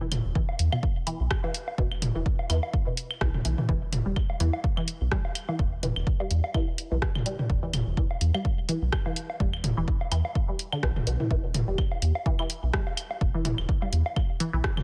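Minimal techno at 126 BPM in E minor, this clinical, cool excerpt cut from a longer piece runs on a lightly swung 16th-note feel over an E5 chord, with a rubbery, hollow square bass sitting up front and pumping from the sidechain beneath a juicy, squelchy blip pluck riff treated with phaser, subtle chorus, 12-bit sampler grit and digital delay. A punchy, tape-warm kick enters at 0.4 s, joining an analog drum machine's hi-hat and rim click already under way, while layered electronic toms, claves and woodblock carry tape echo and the sound of a large room. The mix is dry and close overall.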